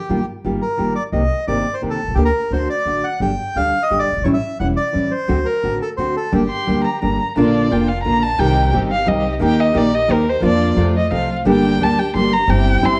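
Heard through a worn, warbling old cassette with pitch drift and a moderate large-room reverb, this melancholic, passionate tango moves in a rubato 3/4 and is cut from a longer piece. A reedy, airy bandoneon carries the melody up front until 7.0 seconds, over fingerpicked nylon-string guitar with audible finger squeak and a woody, thumpy pizzicato upright bass on gut strings. A bowed violin enters at 6.5 seconds and takes an expressive solo from 7.4 seconds, rich with vibrato and portamento, while an intimate studio string section adds soft-attack, sul tasto stabs in the background.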